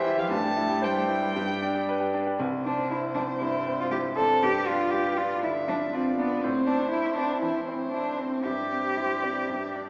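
A quick, graceful and cheerful classical-period movement for piano trio in C major at 118 BPM, cut from a longer piece. A dark, woody violin carries the bowed melody with vibrato, sitting lower in the mix than the up-front cello, whose second line is played sul tasto with a soft attack and an intimate, close vibrato, while a clear, vintage-sounding grand piano with long sustain supplies the accompaniment. All three play throughout, moving from C/G and G into a new passage at 2.4 seconds that passes through G7 and A minor, heard from further back in a wet recital hall with a small-speaker sound.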